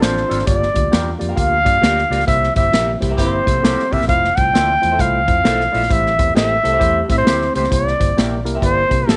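This driving, urgent excerpt of 1960s-style soul opens with the full band already in motion: an up-front, airy drum kit with a punchy kick and medium-tuned snare swings its eighths beneath a dark, round, foam-muted fingered bass. Out front, a dark jazz-style solo trumpet carries the melody with light vibrato and scooped notes. A mellow tine electric piano fills the middle through its built-in speakers, while a very quiet, flute-like tonewheel organ holds soft sustained chords with chorus vibrato and a slow rotary speaker. In the background, two slightly broken-up electric guitars through a small old amp add detail: a twangy fingered riff colored by spring reverb, which drops out at 7.7 seconds, and lo-fi, compressed picked stabs treated with phaser. The band hits an accent at 2.3 seconds, and a distant, roomy horn section slips in a tight second line at 2.6 seconds as the chords move from Gm7 to C7, Fmaj7, Am7 and back to C7, all under a light reverb.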